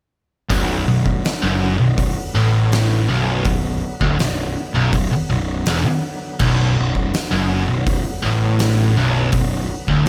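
Hypnotic and heavy, this stoner and doom metal excerpt grinds along at 82 BPM in B minor, with every part entering together at 0.5 seconds and holding a single B minor chord. A biting, double-tracked overdriven guitar riffs in the low register over two thick fuzz guitars sitting in the background, one dark, while a growly, overdriven fuzz bass rumbles beneath and an oversized, low-tuned drum kit pounds with a boomy kick, fat snare and dark cymbals in a pumping stone room. Behind it all, a reedy tonewheel organ holds sustained chords through a slow rotary speaker, its key click audible, and the mix stays fairly dry.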